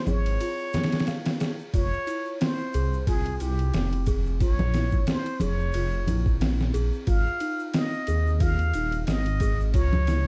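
Smoky and melancholic, this trip hop excerpt at 90 BPM in F minor sets a breathy, plunger-muted trumpet melody with dub echo over delicate, bell-like celesta arpeggios, a deep, rumbling detuned saw bass, ringing congas and egg shaker, and a muffled, overdriven sampler-style drum kit with a thumpy kick, all wrapped in a dark small-room ambience with vinyl crackle, with a brief break from 0.4 to 1.7 seconds before chords move from Fmadd9 through Bbm9 and Ab6.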